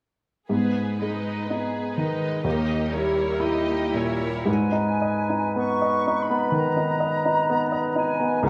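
A slow, rubato 4/4 pulse of 52-65 BPM carries this tragic, brooding classical excerpt in G# minor, where a clear, polished baby grand piano leads the melody throughout, joined until 4.5 s by lush, bowed violin and viola sections with rich vibrato, the violins distant and the violas intense, over G#m and D#7b9 harmony, before a mellow solo cor anglais, a roomy clarinet in the background and an airy, close-miked small flute group take up the second lines from 4.5 s, all set in a wet recital hall.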